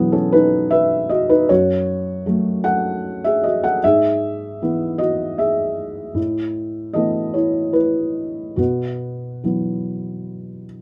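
A felt-muted upright piano plays alone throughout this reflective, intimate neoclassical minimalist fragment, its tone soft, dark and boxy and placed up front, spanning F#2 to F#5. At 76 BPM in 3/4 with rubato and uneven beats, the harmony moves from Bsus4 through F#m, E/G# and Asus2 before returning to Bsus4 at 8.6 seconds. Light reverb surrounds the piano in this brief cut from a longer piece.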